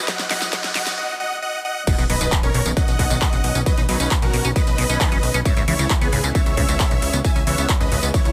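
A punchy, up-front electronic kick drives a straight pulse in this soaring, uplifting trance clip, joined by a big-room kit of crash, handclaps, metallic hats, a huge snare and tambourine, with a brief drum fill and riser building into a break before the drop lands at 1.9 seconds on a background impact. A euphoric, detuned supersaw lead carries the melody with sidechain pumping and digital delay over a silky, very quiet string pad. A squelchy, resonant acid bass arpeggiates in the background through phaser and delay, and a funky, plucky analog bass enters at 2.0 seconds as the chords move from Badd9 to C#m7.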